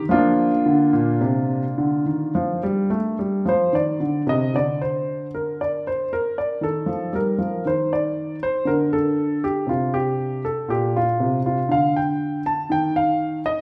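A warm concert grand piano carries this short classical piece alone, a baroque-style suite movement in B-flat major that moves in a flowing, dance-like 4/4 at roughly 53-61 BPM with a supple rubato. The piano sits up front and intimate, its deep bass and natural tone filled out by the audible action noise of the instrument. Its range spans Bb2 to A5, and the harmony travels from B-flat through a chordless passage near 4.5 seconds into a lush Ebmaj9#11 around 6.6 seconds before returning to B-flat. A rootless Cmadd11 colour appears near 12.7 seconds as the fragment is cut from the longer movement. A wet recital hall reverb, with a decay of about 1.6 seconds, surrounds the playing with a sense of space.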